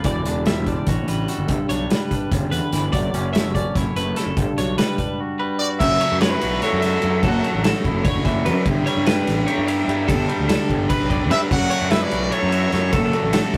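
Math rock and midwest emo in a playful, wistful G lydian, this brief cut moves in a brisk 7/8 at 294 BPM, with a loose, punchy indie drum kit up front, a growly fuzz bass, a twangy electric guitar and a bright twelve-string playing arpeggios, all in a rough rehearsal-room sound with tube saturation, before a brilliant, distant trumpet with light vibrato takes the melody in two short bursts from 5.6 and 11.3 seconds and a raw, double-tracked garage guitar riff enters in the background at 5.8 seconds, over chords such as Em11, Gadd9 and F#m7.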